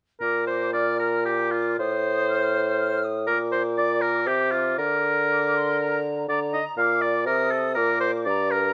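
This is a quick, lively classical-period movement for symphony orchestra in Bb major, set in 3/4 at 120 BPM with a flexible, rubato feel and tuned slightly low to A4 = 438 Hz. A clear oboe sits up front, singing a smooth-topped line with light vibrato in a classical style. Beneath it, a mellow bassoon with a vintage character carries the accompaniment in its low register, also placed close to the listener. A small group of flutes adds an airy second line high above, tongued and touched with vibrato, heard distant and in the background. The three parts play together from 0.2 to 8.7 s over a cheerful progression that moves from Bb through F7/A and Bb/D before closing on Adim/C and Gm/Bb. A moderate stone-room reverb gives the sound a resonant space, and the passage is cut from a longer piece.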